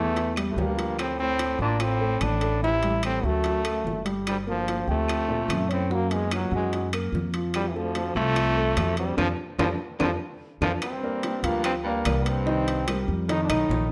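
A brilliant, forceful trombone carries the melody up front with jazz vibrato in this sophisticated, danceable Afro-Cuban jazz excerpt at 146 BPM, while a subtone baritone saxophone with scooped notes plays a second line in the background. A warm, intimate grand piano with audible action noise accompanies a growly, thumpy pizzicato upright bass, and very quiet low-tuned bongos under soft hands, ringing metal-shell timbales and woody claves make up the percussion, all set in a large studio's moderate reverb. The band hits accents from 9.2 seconds, capped by a drum fill just before a new section begins at 10.8 seconds.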